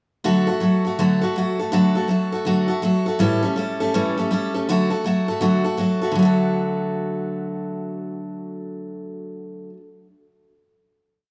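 A lone picked steel-string acoustic guitar opens this short, rollicking rock piece, strumming swung eighths in open chord shapes with a bright, full-bodied dreadnought sound and fresh strings placed up front. It moves from D to A7 and back to D with a rowdy energy, then rings out on a final chord from 6.1 seconds, the moderate reverb of a large studio giving the live-in-one-room playing some air.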